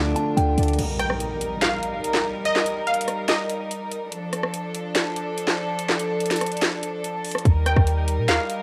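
This dark, hard-hitting trap excerpt moves in a half-time feel, its sound soaked in the hiss and color of a home cassette recording. A dark, mellow grand piano and a deep, boomy 808 bass open it briefly alongside a delicate, warbling FM bell with chorus and delay, all dropping away by 0.8 seconds as a faint electronic impact marks the start of a long break. Through it all a rich, floating string section holds soft-edged bowed chords, while the trap kit carries on with a hard-clipped kick, sharp snare, metallic hats, claps, rim clicks and crash. A glassy, crystalline wavetable pluck with a detuned, evolving tone and filter sweep enters at 1.0 seconds as a second line, drifting over the Eb chord until the harmony moves to Dm. The 808 returns at 7.5 seconds, with the pluck reappearing just after, pulling the groove back toward full weight before the cut.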